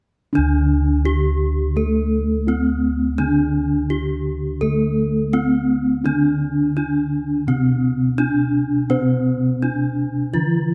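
A mellow bronze metallophone carries the melody in this serene, ceremonial Javanese gamelan excerpt in D slendro at 84 BPM, its soft padded-disc tone shimmering from paired tuning. A brighter, up-front metallophone struck with a horn mallet rings out the accompaniment, while dark, round bossed gongs hold the bass, all in a moderate concert-hall reverb; the accompaniment and gongs enter at 0.3 seconds, with the melody joining at 0.4 seconds.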